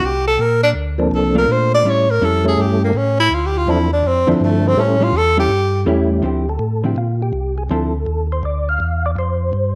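A breathy, close-miked tenor saxophone carries an intimate, whispered solo over the first 6.2 seconds of this bluesy, late-night jazz excerpt, swinging in 4/4 at 164 BPM in D minor. Beneath it, a flute-like tonewheel organ holds the bass line through a slow rotary speaker, while a second organ with percussive attack and chorus vibrato also plays melody, and a dark, compressed hollow-body electric guitar accompanies over chords moving through Bbmaj7, A7 and Dm9. A wet spring reverb surrounds the sound, and the organ melody carries on after the saxophone drops out.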